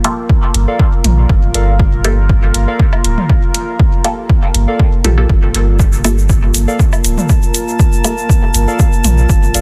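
A hazy, dense and heavily limited digital sound, set in digital ambience, carries this hypnotic dub techno excerpt at 120 BPM in G minor, resting on a single Gm9 chord. A punchy, overdriven electronic kick sits up front beside an overdriven hi-hat, while overdriven woodblock and toms pulse in the background through dub echo and sidechain pumping. A round, sine-like sub bass holds the low end from 0.5 seconds, ducking with the sidechain, and a deep, moody ambient pad sustains chords through chorus and reverb. Muted, detuned dub chord stabs with short decay pass through phaser, cassette tape grit and dub echo until 8.1 seconds, and warbly, nostalgic lo-fi synth keys play a riff higher up, colored by chorus and echo. Near the close a grainy, close and dry tube shaker joins at 5.8 seconds, followed by a drifting, glassy harmonics texture that hangs on a single high note.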